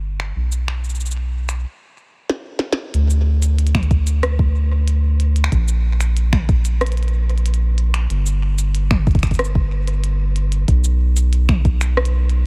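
A round, nasal analog bass sits up front through this cerebral, intricate IDM excerpt at 93 BPM, joined by a glitchy kit of cabasa, finger snaps, clicky hi-hats, rim clicks, a tiny snare and toms steeped in digital delay. The music halts at 1.6 seconds for a stop, with a drum fill arriving at 2.3 seconds, before a deep, up-front electronic kick enters at 3.7 seconds amid a digital ambience.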